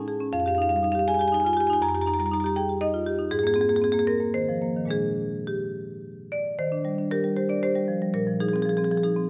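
A solo marimba, played with medium hard mallets on rosewood bars, opens this short contemporary classical passage cut from a longer piece. Its tone is woody and bright with a percussive attack, and it sits up front, captured by close, detailed microphones. The music moves in a flexible, rubato triple metre with a warm, playful character, spanning the instrument from F2 up to Bb5. The harmony passes from Fm9 through Abadd9 and Bb6 before a new section arrives at 6.6 seconds on Ebmaj7, then settles onto Bb9sus4 at 8.1 seconds. A moderate recital hall reverb surrounds the struck notes with a natural sense of space.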